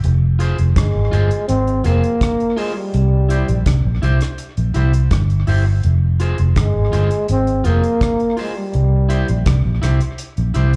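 A breathy, mellow trombone carries the solo melody from 0.8 seconds, its vibrato and soft attack given an intimate, whispered quality and trailed by tape and slapback echo. Beneath it, this meditative, serious roots reggae excerpt moves at 83 BPM in F harmonic minor, alternating between Fm and C. A dark, round, foam-muted fingered bass and a dry acoustic kit with a tight kick, hi-hat and rim click sit up front, the drums touched by tape echo, while a twangy, slightly broken-up electric guitar adds quieter echoed accompaniment, all heard as a live gig through a small club's PA.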